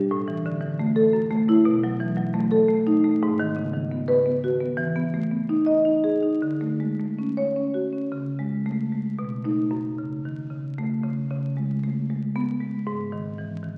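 A round, woody marimba played with soft mallets sits up front as the sole voice of this flowing, hypnotic cut from a longer contemporary classical piece, moving in a rubato 3/4 at 114 BPM in C# minor through mellow extended chords before shifting to a second section at 8.1 seconds, all heard through a wet concert hall reverb and the crackle of a very old 78 rpm record.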